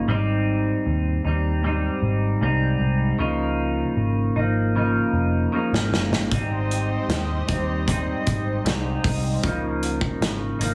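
A straight 4/4 pulse at 77 BPM carries this sunny, laid-back indie and bedroom pop excerpt in Ab major, moving between Abmaj7 and Db69. A twangy, up-front clean electric guitar with lush chorus and a warbly pitch drift opens over a dark, round, foam-muted vintage bass. A loose acoustic kit with a punchy kick and pumping small-room character enters at 5.7 s, and an airy, detuned unison pad softly fills in from 6.3 s to 9.4 s, all within a heavily compressed, radio-like small-room sound.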